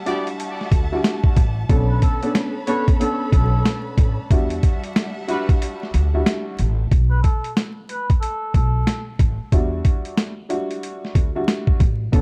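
Tough and gritty, this boom-bap hip-hop excerpt swings on a compressed, sampler-style kit with a thumpy kick and medium-tuned snare up front, while a woody pizzicato upright bass on gut strings enters at 0.7 seconds and a worn, slightly detuned upright piano with a cassette-tape tint carries the Em9, Bm9 and Asus2 harmony. In the opening stretch a dark, lush bowed string section holds sustained chords and a tight, vintage trumpet section adds clear stabs with delay, both dropping out by 6.9 seconds; the kick also falls silent briefly from 5.6 seconds before returning at 6.9. From 1.9 seconds a cup-muted solo trumpet, breathy and veiled with scooped notes, sings a whispered, intimate jazz line from a distance, all set in a small room with vinyl crackle.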